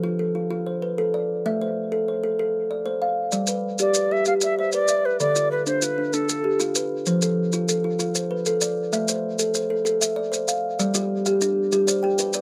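A plucked kalimba opens the piece alone, its woody, ringing tones spinning an interlocking cycle in the manner of southern African traditional mbira music, set in G mixolydian at 128 beats per minute in a straight 12/8. The mood is rippling and hypnotic, with the arpeggios moving through F, Am, G and Dm under a light reverb, and the kalimba sitting up front with a boxy, small-room character. Grainy, mellow maracas join close and up front at 3.3 seconds and keep going to the end. A cedar flute in the Native American style carries a brief, airy melody from 3.8 to 6.6 seconds, its crisp, chiffy attack and vibrato trailed by a slapback echo. Near the close, at 10.9 seconds, a second, quieter kalimba adds its own thumbnail-plucked arpeggios as the harmony settles on G in this short cut from a longer piece.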